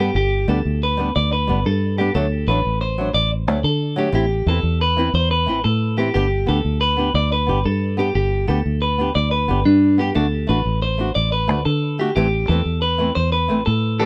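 Sunny and warm, this highlife guitar band excerpt rolls along at 120 BPM in a straight 12/8 in G major, cycling through G, D and Am. A fingerpicked flamenco guitar supplies accompaniment beneath a bright, twangy clean electric guitar playing arpeggios through tape echo, while a round, foam-muted fingered bass sits dark and up front. A slightly broken-up, scooped electric lead guitar enters only at 14.0 s, just as the clip ends, all captured in a dry, close 1970s-style studio sound with light reverb.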